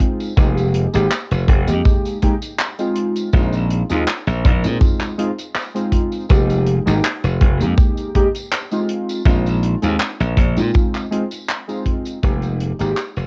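Warbling, detuned lo-fi synth keys carrying subtle chorus, 12-bit sampler grit and analog delay open this hazy, nostalgic vaporwave excerpt at 81 BPM in F minor alongside a punchy kick and a studio kit of handclaps, hi-hat and tambourine with cassette coloring, and glassy, punchy slap bass joins up front from 0.4 seconds over Fm11 and Bb9sus4 chords, all in a dry home cassette recording that fades out from 10.3 to 13.3 seconds.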